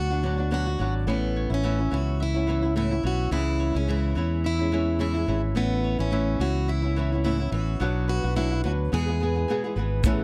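A picked, plugged-in steel-string acoustic guitar carries the melody up front, its fresh strings giving a full-bodied dreadnought tone, in this heartfelt, carefree acoustic pop excerpt, lightly swung in 4/4 over a Bm, Aadd9, C#m and E progression. Close beside it, a fingerpicked flamenco guitar plays the accompaniment, a round, punchy fingered electric bass holds the low end, and a woody, double-strung mandolin adds arpeggios in the background. The sound is dry and close, in a 1970s studio style, and at 10.0 s a reedy, breathing pedal harmonium and a kick drum and shaker with a natural studio-room kick arrive just as the clip ends.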